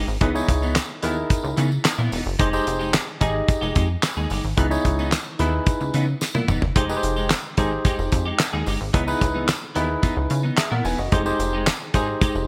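Funky and slick, this 12.5-second cut from a longer early-eighties boogie funk track rides a straight 4/4 groove, with the harmony swinging between Dbm9 and Fm9 chords under a bright, 1980s-style digital sheen and light small-room reverb. Up front, a dry, fat-snared 70s drum kit with a tight kick, handclaps, hi-hat and toms drives the beat, breaking for a fill at 6.2 seconds. Beside it sit a punchy analog bass with a fast, decaying filter pluck, a barky, overdriven tine electric piano played through a combo amp, and a twangy, compressed clean electric guitar riff with ensemble chorus, while a jingly tambourine rings far back in a large room.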